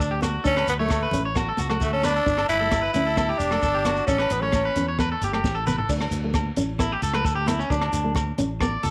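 Danceable and warm, this highlife guitar band excerpt moves at 132 BPM in D major, with a raspy, growling tenor saxophone leading up front until 4.9 seconds over twangy, slightly broken-up electric guitar arpeggios with slapback echo, a round fingered electric bass, a full-bodied thumb-plucked nylon-string guitar, a dark, punchy compact cocktail drum kit with a high-tuned snare, grainy shekere, ringing agogo bells in the background and very quiet damped congas, all in light small-room reverb, before a drum fill at 5.4 seconds opens a clean electric guitar solo at 5.9 seconds.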